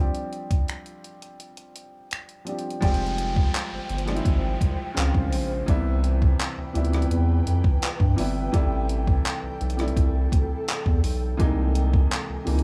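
A gated 80s drum machine with a thumpy kick, snaps, handclaps, hi-hat and rim click sets a straight 84 BPM pulse in this dreamy, tender contemporary R&B excerpt in C major, under an intimate grand piano with audible action noise, joined at 2.8 seconds by a thick, saturated sub bass and an electronic downlifter after a break, then at 3.3 seconds by an ethereal, airy pad with ensemble chorus and phaser, all captured as a dry, gritty hardware recording in a small room.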